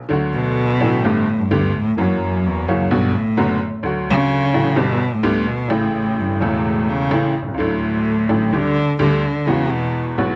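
A bowed, nasal cello takes the solo up front with vibrato and expressive portamento from 0.3 seconds, over a worn, woody, slightly detuned upright piano whose long-sustaining accompaniment moves from D through Gadd9, F#7 and Bm7 toward Eadd9, giving this sultry, tense tango fragment a rubato feel, light reverb and the intimate detail of close microphones.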